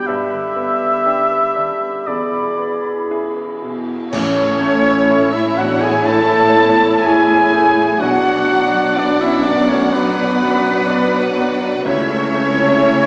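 Heard from further back in a reverberant scoring stage with a small-speaker sound, this tender, hopeful, rubato film-score fragment opens with an airy flute ensemble, a warm oboe and a brief clarinet over clear piano, ringing thumb-plucked harp, and bright cymbals with bass drum; at 4.1 s a mellow, scooped folk duduk takes the melody alongside lush symphonic violins, joined by expressive close studio violins, violas, a smooth-topped French horn section, cellos with portamento, double basses and round soft-mallet timpani.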